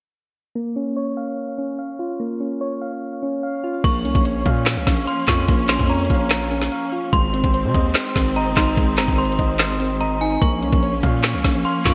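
A bright, 1980s-style digital sheen and lush hall reverb frame this menacing, melancholic half-time trap excerpt at 146 BPM in Bb minor, where soft, warbling electric-piano-like synth keys play arpeggios alone under a filter sweep until 3.8 seconds, when a ringing, inharmonic FM bell line, a background of bowed symphonic strings, a distorted, saturated 808-style bass and an up-front trap kit with knocking kick, woody snare, crisp hats, handclaps and gated-reverb crashes all enter.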